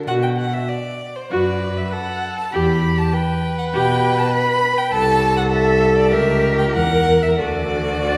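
Stormy and urgent, this brief passage, cut from a longer piece, comes from a quick classical-period movement for string quartet in 4/4, its beats uneven and pushed and pulled with rubato. A clear, focused first violin carries the melody up front, bowed with vibrato high in its register, while a rich second violin sings a supporting line beneath it. The rich viola fills out the accompaniment in the middle, sitting a touch more prominently than the second violin. A bright cello anchors the bass, also placed up front, and every part is bowed with vibrato by a single focused player. The harmony moves through B5, Em, Am/C and C#dim7 before landing on D, and the quartet is heard from further back in a concert hall with a wet 2.0-second reverb tail and a layer of vinyl crackle.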